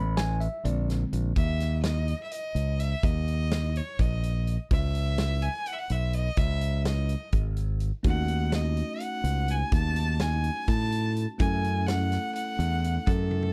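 This driving, intricate progressive instrumental in 7/8 at 251 BPM (eighths) opens with a bell-like tine electric piano over a punchy, up-front fingered electric bass and a big-room rock drum kit, before a biting, distant bowed violin with vibrato takes the melody at 1.4 seconds, the piano returns at 8.0 seconds, and the drums close on a fill at 13.3 seconds, captured in a dry, close 1970s-style studio sound.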